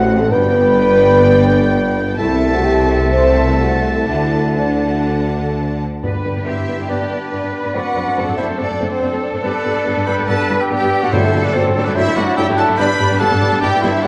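A stormy, dramatic orchestral passage, cut from a longer piece, opens with most of the ensemble at once: a distant, clear violin section carries the melody in the background, while a lush second violin section, a solo oboe, a hollow, airy flute section and, from 0.3 s, a very quiet clarinet weave second lines over dark bassoon, viola, a tight French horn section holding sustained chords, and a deep bass of cellos, double basses and tuba. Soft-mallet timpani strike at 6.0 s and 11.1 s, and a mellow trumpet adds stabs from 6.5 s, all in a moderate concert hall reverb. The sound has the worn, warbling pitch drift of old cassette tape.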